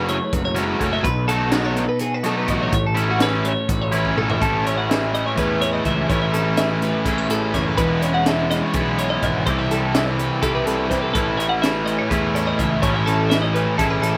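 In a brisk, straight 7/8 at 250 BPM, this wistful, intricate math rock and midwest emo fragment in A lydian sets two twangy, compressed twelve-string electric guitars, one picking accompaniment with slapback echo and one spinning phaser-treated arpeggios, against an up-front, double-tracked overdriven guitar riff, a growly fuzz-picked bass, and a crisp fusion kit with a high-tuned snare and punchy kick in a pumping small room; the drums fill at 4.0 seconds before the section beginning at 4.4 seconds moves from Amaj9 through E6 and C6, all in a dry, close mix.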